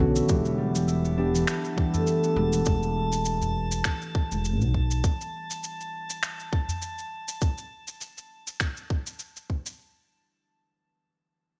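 A tight, tape-warm electronic kick sits up front at 101 BPM in 4/4, with a 56% swing on the sixteenths giving this organic downtempo excerpt a loose, hypnotic sway, while gritty, compressed shaker and finger snaps ride lightly above it in a touch of studio reverb. Over an Em7 chord, muted felt-like synth keys with a dark, warbling, vintage tone pump against the kick through chorus, tape echo and a low-pass filter that sweeps from 0.3 to 2.7 seconds, when the keys fall away. A ringing, fingerpicked concert harp plays arpeggios through the same kind of filter sweep and tape echo, and a woody pizzicato upright bass holds the low end up front until 5.0 seconds. From 1.4 seconds a calm, glassy texture of drifting overtones hangs high and faint in the background with chorus and its own reverb, and a small, close, dry udu adds earthy hand percussion. The light room and soft mix keep the mood intimate and grounded, with the kick and shaker carrying on alone toward the end.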